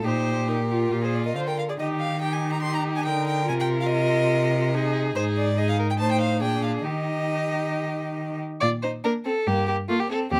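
Closely miked and detailed with light reverb, this fragment of a quick classical-period movement for string quartet in Eb major feels graceful and spirited, moving at 140 BPM in 4/4 with uneven, rubato beats. The first violin carries the melody with a rich, focused vibrato tone and smooth top, and the second violin plays a second line. The viola adds a warm, soft-attacked accompaniment with expressive portamento before stopping at 10.0 s, while the intense, up-front cello holds the bass as the harmony moves from Eb through Ab/C, F7/A and Bb7 back to Eb, then turns toward Gm in a new section from 8.6 s.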